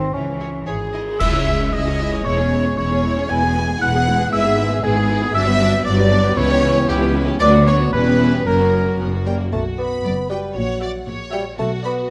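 A worn, bell-like celesta carries the melody of this mischievous, whimsical film cue in 2/4 at 115 BPM, shifting from C# minor to B minor at 5.4 s, over bowed strings with vibrato: lush violins on melody and a second line, background violas, smooth cellos and rich double basses. A very quiet, airy flute, a clear oboe and a mellow clarinet play a second line, a mellow horn section holds chords, cymbals and bass drum strike an accent at 1.2 s, and an up-front bassoon returns at 9.3 s, all in light reverb.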